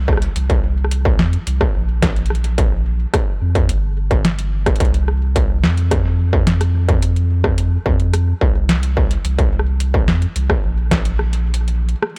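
IDM with a glitchy, eerie mood at 108 BPM in a straight 4/4, this short cut from a longer piece pairs a deep, round sine sub bass sitting up front between G1 and F2 with a distorted electronic kick that sounds re-recorded in a small room and drops out at 11.5 seconds, while an analog drum machine adds a punchy snare, rim clicks and metallic hi-hats through tape echo, all in a dry mix with little reverb.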